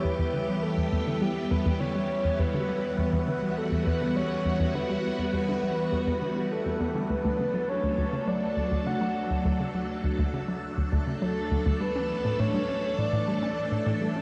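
Ambient, sequencer-driven space music at 102 BPM in 4/4, expansive and hypnotic, cut from a longer piece, where a hollow, bouncy square pluck riff pulses beneath a swirling, phased string machine sustaining chords from Em to D and then Asus4 at 11.8 seconds, while a breathy, flute-like synth lead with chorus, delay and vibrato floats the melody above, a bubbling texture of random filter steps sits in the background until 7.1 seconds, and a filter sweep moves across the arpeggio in the first half, all bathed in a dark, huge reverb.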